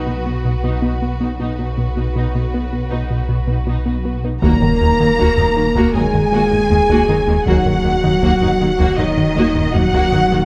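A hybrid orchestral and electronic film-score excerpt in Eb minor at 79 BPM opens with lush, vibrato-rich violins carrying a soft-edged melody and a focused second line over a close, even viola section, a swirling, saturated sawtooth bass with phaser, a punchy wave-folded analog bass riff and background cellos, all resting on a B chord. At 4.4 s the harmony turns to Eb minor as a mellow, distant French horn section and a very quiet trombone section add sustained chords, a faint double bass section joins, heavy-stick taiko drums sound in the background and a huge, bright impact rings until 7.5 s. The moderate concert hall reverb gives the vast, futuristic mood a sense of space.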